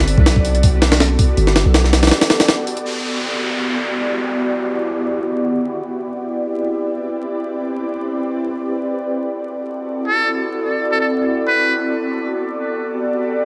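Steeped in vinyl crackle and a lush hall reverb, this nostalgic, atmospheric drum and bass excerpt in free time and E minor opens with an ethereal, airy pad carrying sustained chords under a deep, mellow 808-style sine bass and a gritty, compressed, pitched-up jungle drum kit with a thumpy kick, both of which stop by 2.9 seconds, when an electronic downlifter sweeps in. A buzzy, thin muted trumpet with light vibrato and dub echo then plays a brief jazz-style solo melody at 10.1 seconds over the pad's slow-moving chords.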